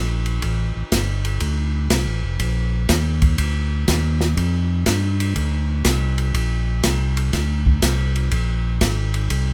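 Swinging and bluesy, this short cut from a longer soul jazz organ trio piece moves in 4/4 with a firm swing on the eighth notes. A tonewheel organ carries the bass line low in its register, its warm, fat, clean tone turning through a slow rotary speaker, while an open jazz drum kit joins at 0.3 seconds with hi-hat, ride cymbal, snare and kick. The sound is close and detailed, with little reverb: the drums feel airy and polished, with dark cymbals, a medium-tuned snare and a boomy kick, and both parts sit up front.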